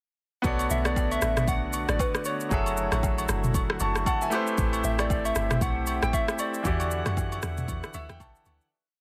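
Hypnotic and soulful, this short amapiano piece sits entirely in its drop, with an up-front electronic drum kit laying down a steady shaker, soft deep kick, syncopated rim clicks and toms, while deep, round log drum bass bursts slide beneath and agogo bells and woodblock tap a dry timeline in the background. A brilliant concert grand piano holds spread chords over a nasal cornet organ stop, whose tremulant-laden pad pumps with sidechain, and a gentle, warbling synth lead with chorus and delay plays hook phrases until 7.4 seconds. The track fades out from 6.7 seconds, and the piano closes with a short fill from 7.7 seconds in a light, ambient studio room.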